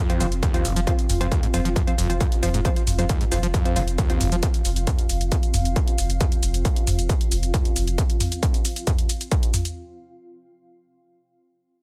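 Driving peak-time techno at 135 BPM with a hypnotic, dark mood, cut from a longer piece and sitting in a drop, as a screaming, squelchy sawtooth acid line with distortion, chorus, delay and sidechain pumping grinds through a riff until 4.4 seconds, joined by crisp, wave-folded wavetable chord stabs with delay. Beneath them a deep, round sine sub bass with tube saturation and a low-pass filter holds a single low note until 8.0 seconds, while a blurred, evolving granular cloud pad with its own reverb drifts above. An up-front, overdriven electronic kick and a layered techno kit of hi-hat, shaker and toms carry the pulse to the end, all in a lightly reverberant space.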